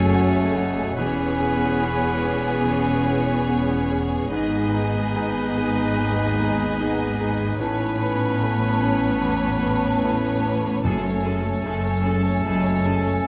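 A sorrowful, longing cinematic passage in F# dorian at a rubato 74 BPM opens with the full orchestra at once: a lush symphonic violin section carries the melody over a bright concert grand piano with deep bass and long sustain, a very quiet viola section, and dark, distant French horns holding sustained chords. Oboe, a soft-attack clarinet, a hollow, airy flute ensemble and a second studio violin section add supporting lines, while a distant cello section and an expressive double bass section anchor the bass. Very quiet timpani struck with hard mallets enter at 10.8 s as the harmony returns to F#madd9, all set in a moderate recital hall reverb captured with close, detailed microphones.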